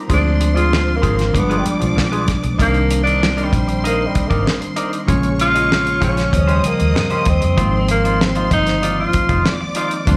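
A straight 4/4 groove at 96 BPM, laid down by a damped 1970s drum kit with a fat snare and tight kick alongside a round, foam-muted fingered electric bass, drives this lush, smooth soul cut from a longer piece. A tenor saxophone solos up front from 0.1 to 9.6 seconds with subtone, vibrato and scooped notes, over a mellow tine electric piano, a twangy, slightly broken-up guitar riff soaked in spring reverb and slapback echo, and a dark, bowed string section sliding with portamento low in the mix. The chords move through Dm7b5, G7b9, Cm9, Bbm7, Eb13 and Ab6, and the whole performance sounds like a live club gig heard through the venue's PA.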